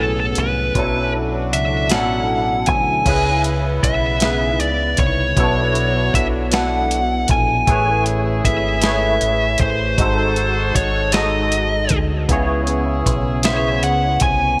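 A dark, fuzz-drenched lead guitar opens this excerpt with a picked solo over the first 3.1 seconds, its distorted tone sitting up front and trailed by digital delay. It's a slow, late-night R&B groove in six-eight at 52 BPM, yearning in mood, moving through chords such as Bm11, C#m7, Amaj7 and G#7b9. A barky, bright tine electric piano carries the accompaniment through a combo amp with ensemble chorus, while a deep, round dub bass, fingered and amped, anchors the low end. A dusty, sampler-style drum kit comes in at 0.4 seconds with a thumpy kick, medium-tuned snare, hi-hat and crash, sounding gritty, compressed and re-recorded in a small room. Further back, a tight jazz-style horn section adds stabs with light vibrato, all set in light reverb and digital ambience for a bright 1980s-style production.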